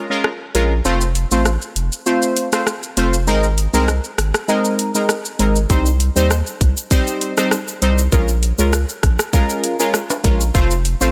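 Punchy, brassy sawtooth synth stabs open this tough, hypnotic dancehall groove at 99 BPM, with a filter sweep, chorus and sidechain pumping shaping their bright tone over chords of Bbm7, F, Abadd9 and Cm. An electronic drum kit with a tight kick, metallic hats, rim click and shaker joins almost at once, along with a deep, thick, saturated sub bass sitting up front. At 5.7 seconds, ringing acoustic egg shaker and hard-hand timbales enter in the background, all within light digital reverb.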